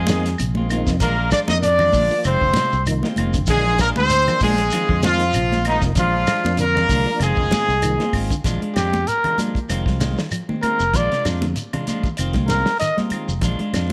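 A punchy, up-front horn section carries the melody over a raspy tenor saxophone, twangy picked guitar stabs, round fingered bass, a dark fingered guitar's arpeggios, a mellow tonewheel organ with fast rotary speaker, a dry 70s drum kit, and background congas, grainy shekere and woody claves in this hypnotic, driving afrobeat excerpt, before the horns, saxophone and organ drop out and a growling, gritty trumpet takes a solo from 8.8 seconds.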